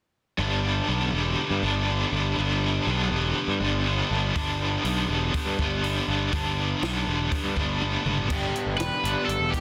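Indie rock excerpt with a wistful, jangly mood, where a bright, overdriven stack guitar riff with tremolo and a fuzzy, picked bass open together at 0.4 seconds, a dry cocktail drum kit with dark cymbals, a high-tuned snare and a punchy kick joins at 4.4 seconds and plays a fill before the next section, and at 8.3 seconds a dark, hollow-body semi-hollow guitar riff with chorus and delay arrives, followed by a second stack guitar carrying a short melody, all in a dense, heavily limited modern master with light reverb.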